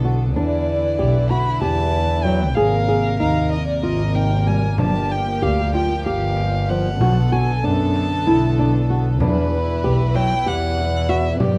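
A rich, floating bowed string section holds sustained chords as a thumb-plucked flamenco guitar spins arpeggios and an up-front, veiled con sordino double bass carries the low line, with a woody, vibrato-laden solo violin taking the melody from 0.4 s and a small, bright frame drum joining from the distant background at 4.8 s, in this hypnotic, restless contemporary chamber piece in 7/8 at 190 BPM (eighths), dressed in light reverb and a dark production.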